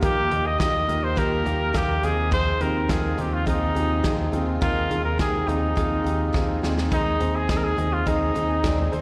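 Piano-driven pop with an anthemic, warm mood, this short section taken from a longer piece moves at 104 BPM in a straight 4/4, cycling through Ebadd9, Fm7/Eb and Ab/Eb over a held Eb in the bass. Up front, a punchy, vintage-toned trumpet carries the solo melody with vibrato and a pop-style delivery, framed by slapback echo and digital delay. Beneath it, a polished concert grand piano supplies the accompaniment with deep bass, audible action noise and its own slapback echo, while a full-bodied dreadnought acoustic guitar picks a riff in the background. A very quiet, lush string section sustains woody, bowed chords, and a foam-muted fingered electric bass adds a round, dark, amped low end. A natural country drum kit with a punchy kick and medium-tuned snare drives the groove, breaking into a fill from 6.3 to 6.9 seconds, all heard as a live gig through the venue's PA with light recital-hall reverb.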